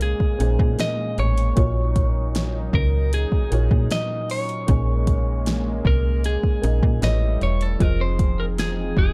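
A snappy, digital slap-like FM bass sits up front in this moody, longing contemporary R&B excerpt at 77 BPM in Bb minor, joined by a smooth R&B drum kit with a soft kick, fat snare and metallic hats re-recorded in a large room, a mellow felt-muted upright piano, a clean, compressed electric guitar carrying the melody through analog delay and plate reverb, and a warm, warbling analog pad with chorus and sidechain pumping in the background, over 9.1 seconds of dark, dry production.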